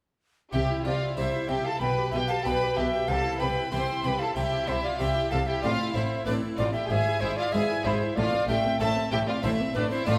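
At 0.5 s the full ensemble begins together in this brilliant, lively excerpt from a baroque-style concerto movement with solo episodes, played in a straight 4/4. An airy, wooden alto recorder carries the melody with tongued chiff, vibrato and expressive phrasing, joined by a rich, smooth violin section that sounds distant as it shares the tune above. A lush, focused second violin section adds a second line beneath, while a close, evenly bowed viola section with light vibrato sits in the background as accompaniment, alongside a dry, bright, close-miked Flemish-style harpsichord plucking on one set of strings. The bass is a warm, soft-attacked cello section with expressive portamento and a distant double bass section, both bowed with vibrato. The harmony moves from C through G/B back to C, then turns to Am, E/G# and Am, all set in a wet recital hall reverb that runs until about 10.2 s.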